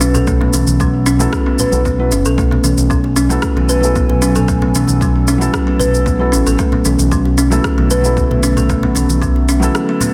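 Organic downtempo with a hypnotic, earthy mood, led by an up-front, woody kalimba playing arpeggios over soft, felt-muted upright piano chords and a smooth, gliding synth bass with a sidechain pump, while a punchy electronic kick, a layered electronic shaker and rim click, very quiet close bongos and congas, and a barely audible metallic singing bowl fill out the texture, and a warbling, nostalgic tape-like pad with chorus and phaser drifts in at 3.1 seconds before a brief break at 9.7 seconds in this dense, heavily limited mix.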